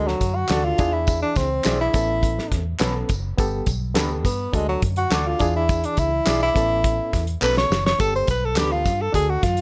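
A small-room studio sound frames this short, joyful cut from an uptempo 1960s-style soul track in a straight 4/4. Up front, a breathy tenor saxophone takes the solo throughout, its subtone and vibrato giving the jazz-style line a warm edge. Behind it, a barky, reedy electric piano plays the accompaniment, lightly overdriven and shimmering with fast tremolo through its built-in speakers. A dark, foam-muted fingered bass provides a round, punchy low end, while a soul drum kit with a fat snare, tight kick and hi-hat, its top rolled off, enters at 0.1 seconds and adds a fill around 7.4 seconds. Close, dry tambourine with maracas and group handclaps brightens the groove, and a twangy, slightly broken-up picked guitar adds background stabs from 0.5 to 8.7 seconds over chords moving from D and E7 to Aadd9 and Gadd9.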